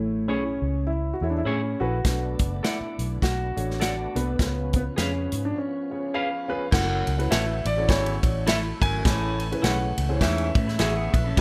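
A grand piano carries the melody through a tape echo in this urgent, passionate cut from a longer uptempo 1960s-style soul piece with a swung feel, backed by a woody upright piano with audible action noise, a dark, round muted electric bass, and bright, clean stabs from a semi-hollow guitar bathed in spring reverb. At 2.0 seconds a punchy, natural drum kit and a gritty, overdriven tonewheel organ with key click join, the organ holding sustained chords in the background through chorus vibrato and a slow rotary speaker. A raspy, distant baritone saxophone enters with a riff at 6.7 seconds, and at 10.6 seconds a slightly broken-up, lo-fi electric guitar through a small old amp adds its own riff through a phaser, all set in a light room reverb.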